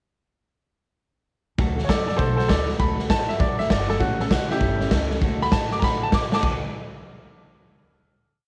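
A swung train beat at 198 BPM drives this short, rowdy rockabilly piece in D major, where a gritty, punchy garage drum kit sits up front beside a brilliant upright piano playing a returning lick-based theme, while a thumpy pizzicato upright bass plays a quarter-note figure and a dark, full-bodied steel-string acoustic guitar strums eighths in open chord shapes in the background, all under light reverb, moving from D to A7 and back before a drum fill at 5.8 seconds leads into a final chord at 6.4 seconds.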